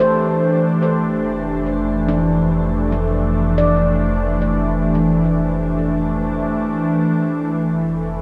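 Serene and warm, this 72 BPM ambient excerpt rests on a single Dm7/F chord, with a morphing, detuned wavetable pad sustaining chords up front through chorus and shimmer reverb, a ringing nitrided-steel handpan playing arpeggios through delay and shimmer, and a round, dark analog bass holding a deep F1, set in a vast, echoing cathedral space.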